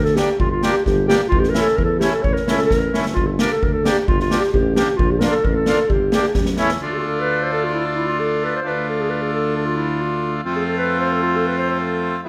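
Klezmer at 132 BPM in 2/4, soulful and bittersweet, cut from a longer piece: a mellow, distant classical-style clarinet sings the melody over a roomy jazz-style tuba bass with scooped notes, while a reedy, mid-forward accordion sits up front in accompaniment and an airy, polished street-band drum kit with a boomy kick and medium-tuned snare adds fills at 2.7 and 6.4 seconds before dropping out at 6.8 seconds, where the key moves from G dorian sharp 4 to D dorian sharp 4, all speeding up in a moderate recital-hall reverb.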